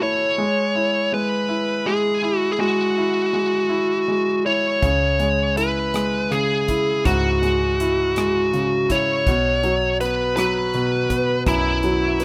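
A bluesy overdriven lead guitar carries the melody up front, its dark, distorted, picked tone singing over a clear, polished baby grand piano in this romantic, tender six-eight pop ballad in E major at 54 BPM, cut from a longer piece. At 4.8 seconds a vintage muted fingered electric bass, round and foam-muted, joins with a modern acoustic drum kit playing hi-hat, rim click and a tight kick, as the harmony moves from E/G# to C#m and then Bsus4. The rough home demo mix has a studio ambience.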